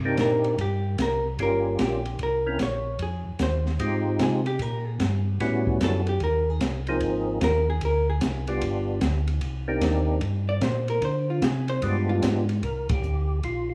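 Soul jazz organ trio music with a late-night, soulful mood, swinging in 4/4, in a short excerpt cut from a longer piece. A percussive tonewheel organ carries the melody with a fat tone, third harmonic percussion, key click and chorus vibrato through a slow rotary speaker, while a second, mellow and round tonewheel organ plays the bass line, also through a slow rotary speaker. A dark, clean, compressed hollow-body electric guitar sits up front and takes a solo through the first 12.6 seconds, moving through rich minor and altered chords such as Cm9, C7b9, A13 and Ab69. The open acoustic drum kit has dark cymbals on hi-hat and ride, a high-tuned snare and a boomy kick, with a rolled-off top. Near the end the band hits an accent at 12.8 seconds as the harmony settles on Csus2, all heard through light reverb and the small-room ambience of a rough home demo mix.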